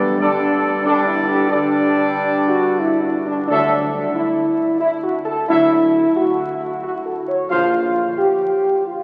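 Heard through the crackle of a very old 78 rpm record and the long wash of a cathedral reverb, this brass chorale from a longer classical piece moves at a stately 90 BPM in 3/4 in D major, its mood regal and solemn. A clear trumpet section carries the melody up front alongside mellow French horns holding sustained chords, while a warm trombone section with light vibrato sits in the background and a soft-attacked tuba anchors the bass. The harmony passes from Gsus2 to Dadd9 and then to Bb at 7.5 seconds; the trumpets and trombones stop at 7.7 seconds, the tuba follows at 8.1 seconds, and the horns ring on alone until 9.0 seconds.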